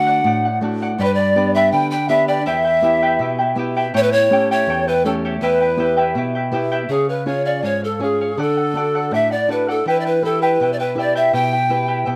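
An up-front pan flute carries the melody from the first moment in this earthy, wistful Andean folk excerpt, its pure, tongued tone marked by vibrato and a chiff, while a mellow large quena traces a very quiet, distant second line in straight tone. Beneath them, a shimmering charango with double strings and a dark, up-front nylon-string guitar, both fingerpicked, supply accompaniment at 81 BPM in 2/4, in E dorian. Moderate studio reverb surrounds the parts, and the passage moves into a new section at 6.9 seconds.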